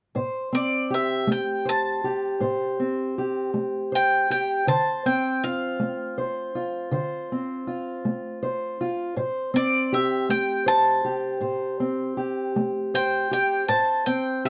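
A bright bowl-back mandolin carries the melody up front, its doubled strings picked high over a dark, boxy parlour steel-string guitar fingerpicking the accompaniment from 0.1 seconds. This mournful, brooding acoustic country blues moves slowly at 53 BPM in a straight 12/8, in A minor, cycling through Am7 and Dm7 before returning to Am7 at 9.2 seconds. The sound is dark and warm, set in a small room with moderate ambience, and the passage is cut from a longer piece.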